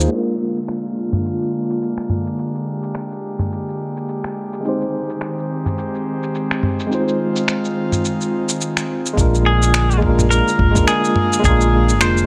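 Bathed in light reverb and a dusky, low-pass-filtered digital ambience, this wistful sunset chillout excerpt opens on a worn, slightly out-of-tune tine electric piano with gentle overdrive and delay, a breathy, chorused pad drifting over Bb7, Abmaj7 and Fm7, and a gritty, tape-toned sampler-style soul kit of crash, finger snaps, shaker and toms under a filter sweep. At 9.2 seconds a round, dark fretless bass, heard only fleetingly at the very start, comes back, and a thumpy electronic kick drops in as the Bb7 returns. From 9.5 seconds a twangy, picked clean electric guitar with delay carries the melody up front.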